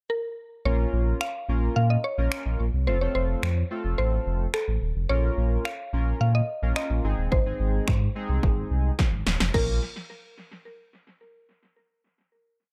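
A woody, round mallet-like synth pluck carries a motif-based melody through this short, energetic and bittersweet dance-pop piece at 108 BPM, over a glossy chorused polysynth playing dark syncopated chords, a deep sine sub bass with octave pumping up front, and a punchy, tape-warm analog drum machine that drives a four-on-the-floor beat from 1.2 seconds, moving through Bbm, F and Ab in a dry, echo-heavy mix before a drum fill at 9.0 seconds leads to the final chord.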